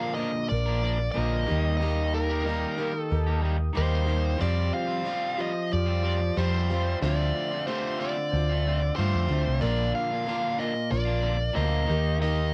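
A biting, overdriven lead guitar carries the melody up front from the start of this nostalgic folk rock and heartland rock passage at 92 BPM in 4/4. Alongside it from the outset play a twangy electric guitar riff at the edge of break-up, a dark, boxy picked parlour acoustic guitar in the background, a very quiet woody upright piano and a soft, flute-like tonewheel organ with key click and rotary speaker. A round, hollow-body picked electric bass sits up front from 0.5 seconds, over chords moving from Bb through Eb, Fsus2 and Dm7, all in a dry, close 1970s-style studio sound.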